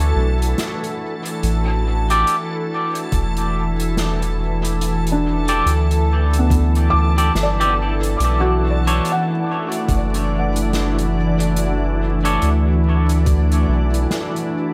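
A deep, round sub bass sits up front in this meditative ambient dub fragment, beneath a calm organ-like pad with ensemble chorus, a felt-muted upright piano playing intimate arpeggios with audible action noise, 12-bit sampler grit and tape echo, a reversed, swelling granular texture, and a soft-mallet acoustic kit with a fat snare and dub echo, joined at 2.1 s by clean, twangy electric guitar stabs echoing in dub style and at 3.1 s by a muffled, thumpy, pitched-down electronic kick.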